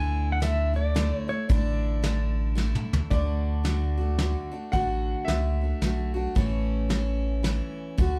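A rubbery, hollow square-wave bass sits up front in this sunny, heartfelt honky-tonk and classic country excerpt, swinging in 3/4, while a twangy pedal steel guitar with fingerpicks, slide and volume swells carries the opening melody until 2.5 s. A bright, full-bodied dreadnought acoustic guitar picks the accompaniment with audible finger squeak, and a soft brush kit with a punchy kick plays a fill leading into 3.1 s, where a clear, woody upright piano takes a polished solo. The studio ambience is moderate and heard from further back in the room, and the passage is cut from a longer piece.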